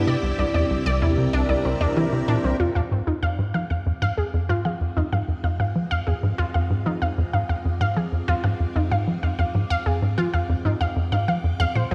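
Ambient, sequencer-driven space music in F dorian at 95 BPM in a straight 4/4, this brief excerpt cut from a longer piece feels mysterious and cosmic. A tight, punchy sequencer bass drives a sawtooth-and-square riff with a mellow filter pluck, sitting up front with subtle chorus and delay, while a bright, detuned unison pluck spins delayed arpeggios built from wave-folded, ring-modulated tones. Behind them, a vintage full-ensemble string machine holds lush, full-bodied sustained chords with a slow attack, a moving notch and ensemble chorus. A resonant, bubbling texture of random filter steps hovers high in the background with chorus and its own reverb. Between 0.7 and 2.6 seconds an evolving analog drone with pulse-width modulation sits low on C2 beneath a filter sweep, as the harmony moves from C7 to Fm7 at 2.6 seconds and the string machine fades in from that point. A wet concert-hall reverb with a 2.2-second decay wraps the mix in a spacious, drifting atmosphere.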